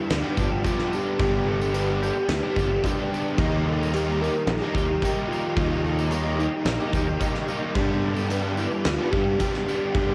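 A straight 4/4 pulse at 110 BPM drives this dreamy, wistful shoegaze and dream pop excerpt, carried by a huge arena drum kit with a punchy kick, fat snare and bright crash cymbals that comes in at 0.1 seconds. A fuzz fingered electric bass growls underneath with overdrive, while a distant, jingly tambourine sits far back in a large room. Two overdriven electric guitars play picked riffs: one sits in the background with ensemble chorus and cassette tape coloring, the other is compressed and treated with reverse reverb and cassette tape. An electric guitar through a small old amp adds very quiet, slightly broken-up, lo-fi arpeggios. Over it all floats a soft octave-layered synth lead, round and detuned with a sub octave, vibrato and a gentle attack, its melody washed in chorus, phaser, tape wear and analog delay. The harmony moves from G to Eb at 3.4 seconds and back to G at 7.8 seconds, all set in a studio reverb with the hazy feel of a home cassette recording.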